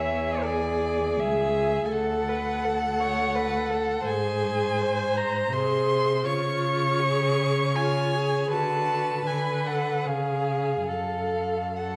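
Classical chamber music for string quartet, this slow romantic movement in triple time moves with a yearning, elegiac mood and a flexible, rubato pulse. A single bowed violin carries the melody up front, its rich tone shaped by vibrato, expressive portamento slides and a high, singing register. A second violin plays a warm, focused inner line beneath it, while the viola supplies smooth, even accompaniment that sits more distant in the blend. The cello anchors the bass close and up front, its rich tone coloured by vibrato and portamento for expressive phrasing. All four players sound together throughout the 12 seconds of this fragment of a longer work, placed in a reverberant recital hall and overlaid with vinyl crackle.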